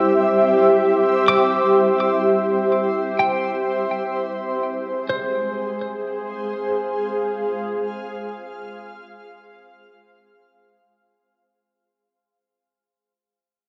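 In free time, this serene, melancholic ambient excerpt sets a cloudy, evolving granular pad, up front with its own built-in reverb, holding sustained chords that shift from C to Fm around 4.1 seconds, while a bright, clean semi-hollow electric guitar with subtle chorus and delay plays arpeggios until 7.5 seconds, all within a wet concert hall reverb and cassette tape tone, as a filter sweep runs across the pad and a fade-out begins at 1.6 seconds.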